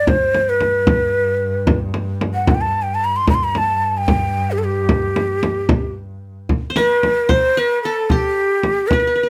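Light reverb surrounds this stately, passionate excerpt of an Arabic maqam ensemble in 6/8 at 75 BPM. An up-front, breathy ney carries the melody with vibrato and tongued, unsteady phrasing, while a deep frame drum played with hard hands sits close alongside and a rich, bowed double bass holds a G2 drone with portamento until 6.6 seconds. At 6.7 seconds a plucked qanun with a bright edge and triple strings takes up a quieter second line.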